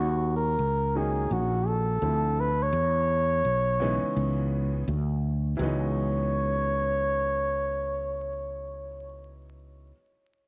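A mellow flugelhorn with light vibrato carries the jazz-style solo melody up front in this cool, nocturnal jazz-hop fragment, its line ending at 9.2 seconds. Beneath it, a woody, vintage-toned upright piano with short sustain plays the accompaniment, and a direct, up-front fretless electric bass holds the low end over a swung 4/4 groove, with the harmony moving from D#m7 through Dm9 and C#m9 to C#m11 at 5.6 seconds. A moderate spring reverb and vinyl crackle color the recording.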